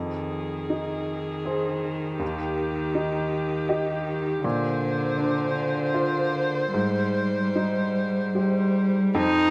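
Neoclassical piano and strings in a fragile, longing mood, this brief passage cut from a longer piece drifts in a rubato 3/4 at about 72-81 BPM over Fm7, Eb, Bbadd9 and Abmaj7, with a woody, natural upright piano accompanying, a single rich viola bowing a smooth, even line with vibrato, and a lone clear, focused cello singing a second line with vibrato, the trio set in a dark production with a moderate scoring-stage reverb.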